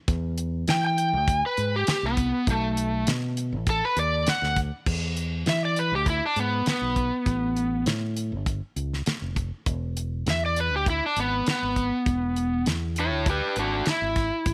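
A straight-eighth groove at 100 BPM in 4/4 drives this soulful, gritty soul blues excerpt, with a dry, damped 70s drum kit putting a fat snare, tight kick, hi-hat and crash cymbal up front alongside a dark, round fingered electric bass. From 0.7 s an overdriven slide guitar takes the lead with a bright tone, featured as a solo through 4.9 s over an Em to B7 change before the harmony settles toward E. The band sits in a small room with light reverb, every part up front.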